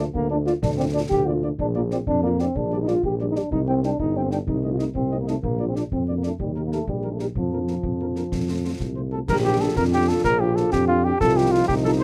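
A dark, close-miked cornet opens this rousing, spirited wind-band march in six-eight, carrying the melody up front with a light vibrato while a soft-attacked euphonium sounds a second line from a more distant, roomy position. Beneath them a warm tuba anchors the bass, also with a light vibrato and placed prominently, and a very quiet French horn section fills in the accompaniment with a shaded, classical sound. From 0.1 seconds a concert bass drum, concert snare drum and clash cymbals mark the march, sounding acoustic, close and dry, with dusky cymbals. At 9.1 seconds a very quiet flute ensemble adds a pure, hollow second line high above, and at 9.3 seconds a clear, punchy trombone section joins softly with sustained chords. The whole is cut from a longer piece and carries a light reverb and a dark, rounded production.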